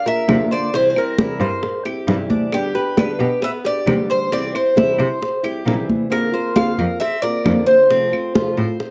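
Two picked Cuban tres parts open this relaxed, warm son and guajira excerpt: one up front carrying a metallic, double-string melody, the other playing softer arpeggios, both with cassette-tape coloring and plate reverb. A small, fingerpicked nylon-string guitar on cassette adds accompaniment, while a bright, bowed cello with vibrato supplies the bass line from 0.3 seconds over chords moving from Bb through C, G and Bbadd9 to F. Close, dry congas with a thick skin lead the percussion, with tight, hard-hand bongos and woody, saturated claves sitting in the background of a home cassette recording in a moderate room.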